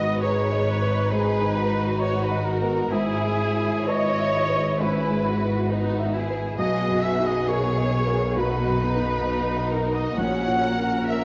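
In a rubato 4/4, this sorrowful, bittersweet cinematic score fragment sets a lush violin section melody beside a mellow cor anglais and a second violin line, over a felt-muted upright piano with audible action noise, rich violas, background cellos and distant, clear double basses, heard through scoring-stage reverb and the warbling pitch drift of worn cassette tape.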